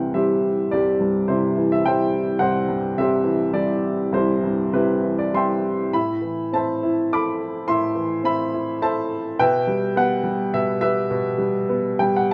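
Set in the moderate reverb of a recital hall, a clear, woody upright piano sits up front in this cool, moody excerpt of lyrical classical solo piano, moving in a rubato 3/4 from C through Amadd9 to Em/B before a brief fill at 11.7 seconds.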